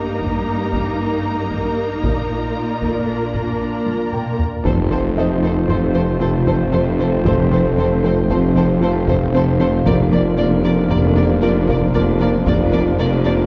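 Relentless and vast, this cinematic hybrid orchestral and electronic film-score excerpt moves at 115 BPM in 5/4, where dark violas, lush cellos, a smooth-topped violin second line, a hollow chorused pad, a muted felt upright piano, background taiko and distant horns are joined at 4.6 seconds, after a drum fill, by a rich vibrato violin melody with portamento over woody double basses, a mellow tuba, bright trombones, a punchy plucky analog bass riff and a thick, menacing detuned saw bass, all set back in a roomy scoring-stage reverb.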